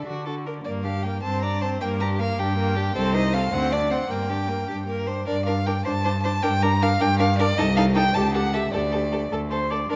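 A bowed cello sits up front with a smooth, even tone and light vibrato, anchoring the bass of this stormy, dramatic classical-period movement for string quartet, heard here as a short cut from a longer piece. It enters at 0.1 s, just after the others. Above it, a close, focused first violin carries the melody with a clear voice and vibrato. The second violin adds a rich-toned second line and the viola a focused accompaniment, each a single bowed player. The quick 6/8 music moves through Gm, D7 and diminished colors, with a second section arriving at 5.3 s and closing on a suspended D chord that settles to a bare D. A moderate concert-hall reverb surrounds the quartet, and vinyl crackle lends the sound an aged patina.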